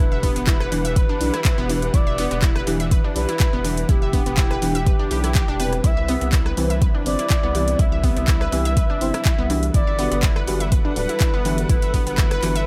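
A straight 4/4 pulse at 123 BPM drives this bittersweet, dreamy progressive house excerpt in E minor. At 0.2 s, an up-front, deep electronic kick and a house kit of handclaps, hi-hat and rim click arrive beneath parts already sounding from the start: a round, dark analog bass, a bright, detuned unison pluck playing arpeggios with tape echo and a filter sweep, soft chord stabs in the background treated with phaser and chorus, a smooth bowed string section holding sustained chords, and a mellow, expressive portamento lead carrying the melody through chorus and dub echo. Meanwhile the harmony moves from Em7 to Cmaj7 to Gmaj7 in a dry, close mix with sidechain pumping on the bass, pluck, stabs and strings.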